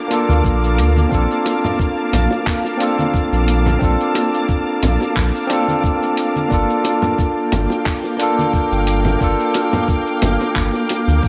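A lightly swung 4/4 groove at 89 BPM anchors this smooth, sunny sunset chillout excerpt in Bb major, where a thumpy electronic kick arriving at 0.4 seconds and a gritty, compressed soul drum kit of handclaps, hi-hat and shaker sit alongside soft-handed bongos and congas in the background, while a round sub bass sits up front beside a barky tine electric piano with delay, and an ethereal, detuned ambient pad with chorus and octave-up shimmer holds the Gm7 and Bbmaj7 chords in a light digital reverb.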